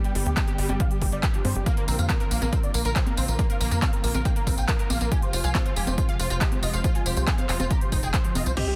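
This driving, euphoric uplifting trance excerpt opens at once with a huge, detuned supersaw melody riding over dark, woody strings that hold sustained chords in the background, both pumping against the sidechain and softened by a low-pass filter. A bright unison pluck spins arpeggios through tape echo, while a layered, overdriven drum kit with crisp hats, handclaps, tambourine, congas and crash cymbal fills out the groove, its sound re-recorded in a large room. At 0.2 seconds a tight sawtooth sequencer bass joins, and a punchy analog kick sits up front from 0.4 seconds. The harmony moves from G to Bb and then to F minor, giving the straight four-four pulse a lifting, bittersweet pull. At 8.6 seconds an electronic impact lands alongside a clear, intimate grand piano sounding G4 with audible action noise, all set in digital ambience within a dense, heavily limited modern master.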